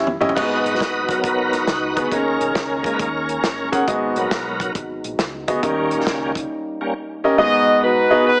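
Heavily compressed with a small-speaker radio sound and a large studio reverb, this soulful, solemn uptempo gospel excerpt in G# minor swings at 137 BPM as a drum fill opens into a shouting, lightly overdriven tonewheel organ solo with key click, chorus vibrato and slow rotary speaker, over clear concert grand piano, a dark, very quiet French horn section, a round dub-style fingered electric bass in the background and a tight soul drum kit, before a mellow, pop-style horn section takes the melody at 7.4 seconds.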